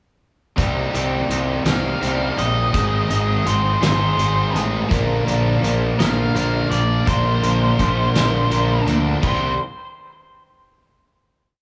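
Cool and bittersweet, this brief indie rock piece in C minor moves at a slow 56 BPM in 6/8, with a fuzzed, driving eighth-note bass up front beneath a loose, roomy drum kit with dark cymbals and a fat snare, two overdriven guitars in the background (one strumming chords, the other playing short syncopated chords with lush chorus and tape echo), and a dark octave-fuzz lead entering at 1.7 s with a motif-based melody over Cm7, Ab and Bbadd9 before settling on a final C minor chord at 9.2 s.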